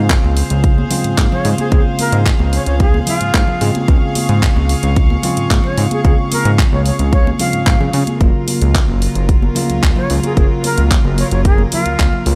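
A punchy, up-front electronic kick with studio reverb anchors this sunny, groovy nu-disco excerpt at 111 BPM in Db major, where a fat, detuned analog bass with a filter pluck, bell-like tine electric piano and floating bowed strings all pump with sidechain, layered pop-kit handclaps and hi-hat and saturated congas in the background drive the beat, and a distant, breathy jazz flute with vibrato and tape echo enters at 1.3 seconds over chords moving from Dbmaj7 to Gbmaj7 at 8.2 seconds.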